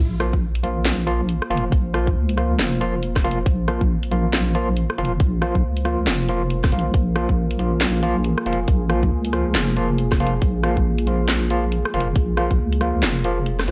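A deep, wobbling, compressed bass opens this heavy, meditative stretch of half-time deep dubstep with a swung feel, joined almost at once by a moody, evolving pad of detuned sustained chords that sits in the background with chorus and its own reverb. A barky, gritty electric piano plays overdriven stabs through a combo amp, shimmering with fast tremolo and dub echo. Up front, a tight electronic kick and a garage kit of handclaps, hi-hat, rim click and a cracking snare drive the groove under a light reverb.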